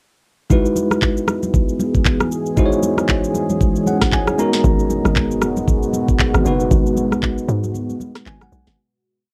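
Hypnotic and soulful, this short amapiano piece in G# minor moves at 116 BPM with a swung sixteenth feel. An up-front, bell-like tine electric piano holds rootless chords from Emaj7 to G#m9 with grace notes and short fills, over a moody, detuned sawtooth pad with chorus and sidechain pumping, a knocking electronic drum kit with sharp snare, steady shaker and syncopated rim, and bright, thin-skinned congas in the background. At 4.6 seconds a hollow, bouncy log drum bass enters with syncopated sliding bursts, before a fade-out from 6.7 seconds and a break at 7.7 seconds, all with a light reverb and the soft grain of a cassette home recording.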